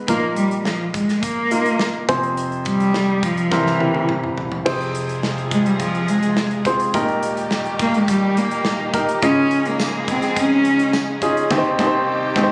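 An upright piano opens this warm, anthemic piano-driven pop excerpt, sitting up front with a woody, intimate tone and audible action noise. Almost at once a single dark cello takes the melody, close and soft in attack with vibrato, an airy sul tasto bow and a smooth top, carried by plate reverb and delay. A modern acoustic drum kit supports them with a punchy kick, medium-tuned snare and bright cymbals, and a drum fill leads into a lusher section where a bowed string section enters at 4.7 seconds with sustained, woody chords. A jingly, vintage-sounding tambourine adds colour from 9.8 seconds, and a full-band accent lands at 11.5 seconds before the clip cuts off. The whole performance sits in a moderate studio reverb, though it carries the slightly roomy character of a phone recording.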